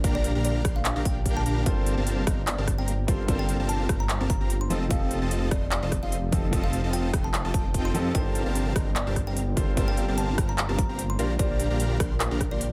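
This dry recording, cut from a longer piece, is future bass in G minor at 148 BPM, set in a half-time 4/4 feel with a light swing on the sixteenths. The mood is lush and bittersweet, and the harmony moves from Bb6 to Gm11 and F7 and back again. An overdriven electronic kick with a punchy edge and a big-room dance kit of handclaps, crisp hi-hats and rim clicks drive the groove. A thick, detuned saw bass with chorus sits up front and pumps from sidechain. A huge, compressed supersaw riff runs through a cassette tape effect with vibrato and also pumps, over a very quiet, ethereal pad with a slow attack and long release. A woody, thumbnail-plucked kalimba carries the melody from 0.2 seconds through dub echo, and a vintage grand piano joins in the background at 1.6 seconds, its accompaniment trailed by digital delay.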